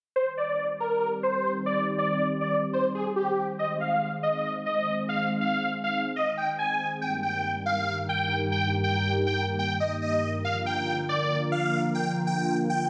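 Trance at 140 BPM in C minor, this bittersweet, emotional fragment cut from a longer piece sets a huge, detuned supersaw carrying the melody through phaser, delay and a filter sweep above a silky, wave-folded analog string pad that holds slow-blooming chords with ensemble chorus and its own filter sweep, both parts up front in a lush hall reverb as the harmony moves Cm, Ab, Eb/G, Bb.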